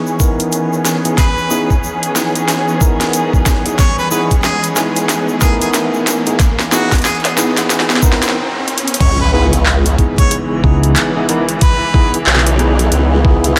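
This funky, swaggering glitch hop excerpt opens on a dark chamber string section holding soft-edged, bowed chords with vibrato beside stabs from a clean tine electric piano, both pumping under sidechain and muffled by a low-pass filter, the piano trailing delay. A grainy tube shaker and a gritty, thumpy kick drum, up front, arrive almost at once, joined by an overdriven electronic kit with a cracking snare, bright hats, handclaps, rim clicks and crash cymbal over a swung groove. From 1.2 seconds a bright, jazz-style harmonica solo drifts in the background with scooped notes, tongue slaps, light vibrato and vintage sampler grit, while a very quiet electronic riser builds toward a brief break. At 9.0 seconds the drop lands with an impact and a detuned, chorused formant-sweep wobble bass pushed to the front, briefly joined by a growly, bright fingered electric bass. The whole mix is dreamy and soaked in cathedral reverb, built on a C#m7 chord.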